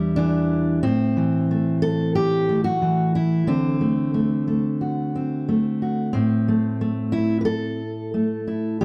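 A dark, roomy studio sound with a moderate large reverb frames this short excerpt of reflective, wistful solo folk in A dorian at 90 BPM, where a full-bodied, up-front fingerpicked steel-string dreadnought guitar plays alone from 0.0 to 8.8 seconds, ranging from E2 to B4 as it moves through Em7, Am, D7 and back to Am.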